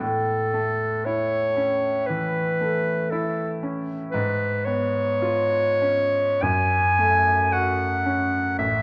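Set in a moderate recital-hall reverb, this elegiac, melancholic romantic classical duo moves at a slow, rubato 47-59 BPM in 4/4, with a bright, present clarinet singing the solo melody up front over a clear grand piano's smooth, vintage accompaniment of long sustain, as the harmony passes from A major through C#7/G# to settle in F# minor from 4.1 s in this brief fragment of a longer piece.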